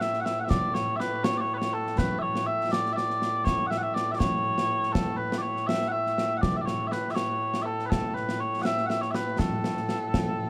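Scottish traditional pipe music in 6/8 at 81 BPM, this proud, ceremonial excerpt in A major is carried by mellow small bagpipes playing the melody across a range of A2 to F#5 with a sweet, continuous tone and vibrato, up front as the solo voice. Concert snare drum and concert bass drum sit just as near, acoustic and captured in a live room with bright cymbals, playing from 0.0 to 10.3 seconds. Light reverb gives the short clip a gentle sense of space.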